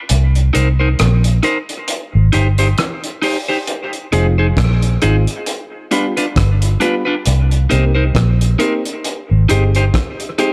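A dark, round muted electric bass sits up front from the opening moments of this meditative, heavy dub reggae passage in C minor, moving at a slow 67 BPM in 4/4 with a swung sixteenth-note feel. Beside it, a cloth-damped, muffled drum kit plays hi-hat and rim click through an opening break. Its tight, gritty kick holds off until 3.7 seconds, arriving as the harmony moves from Cm7 and Abmaj7 to Fm7 and G7. An electric guitar at the edge of break-up joins just after the start, high-pass filtered and bathed in dub echo, its compressed, picked accompaniment sitting forward in the mix. At 4.1 seconds a woody, boxy upright piano adds intimate stabs with audible action noise and long sustain, carried by its own dub echo. The small room and echo-heavy mix give the lo-fi drums a close, saturated weight, and this fragment of a longer piece comes back to Cm7 and Abmaj7 before it stops.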